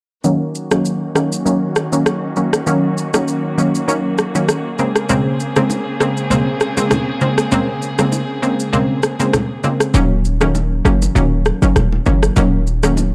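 A round, detuned analog pluck with chorus sits up front over Ebm7 and Bbm9 chords, joined by a bowed chamber string section with vibrato and an electronic shaker and rim click, as a filter sweep runs through the opening passage of this hypnotic, sultry afrobeats excerpt at 99 BPM in Eb dorian. Bright, saturated congas and bongos enter in the background at 5.1 seconds. At 9.9 seconds the strings stop, the kick is muted, and a punchy, heavy 808-style bass arrives, all heard through a dry, gritty cassette-tape sound with small room ambience.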